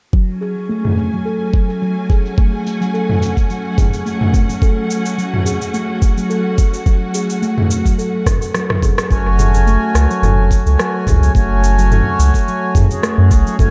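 A ringing steel tongue drum, struck with rubber mallets, plays filtered arpeggios through tape echo and a filter sweep, opening this earthy, meditative organic downtempo excerpt in F# minor at 107 BPM with a lightly swung 16th feel. Beneath it, a knocking electronic kick sits up front beside a filtered organic electronic kit of rim click, shaker and toms, both re-recorded in a large room, while a distant, lush bowed string section holds pumping sustained chords through a drum fill that begins at 8.3 seconds. At 9.1 seconds the strings give way to a reedy, breathing pedal harmonium with analog delay and a deep, nasal analog bass with a fast-attack filter pluck, both pumping, all set in spring reverb within an echo-heavy mix.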